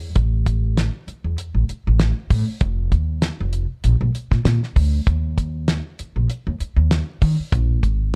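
A dry, close-up recording with little reverb carries this short, nocturnal and funky electric jazz fusion groove in 4/4 with a light sixteenth-note swing. A woody, dark upright bass, plucked on steel strings, sits up front from the very start and roams from F1 to Eb3. At 0.2 seconds a damped 70s drum kit joins on hi-hat, kick and snare, its fat snare, tight kick and rolled-off top giving the beat a smooth, warm weight.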